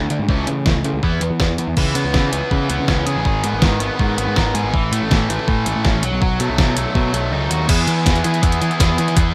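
A detuned 8-bit drum machine, with a thumpy kick and overdriven snare and hi-hat, sits up front beside a bright, double-tracked distorted guitar riff and a warm, fuzz-laden picked bass in this carefree yet wistful indie rock excerpt at 162 BPM in E major. The chords move through C#m7, G#m, A and B7 before landing on E at 7.7 seconds, just after the kick and snare drop out at 7.3 seconds. The rough home-demo mix carries a digital ambience, and the drums sound re-recorded in a small room.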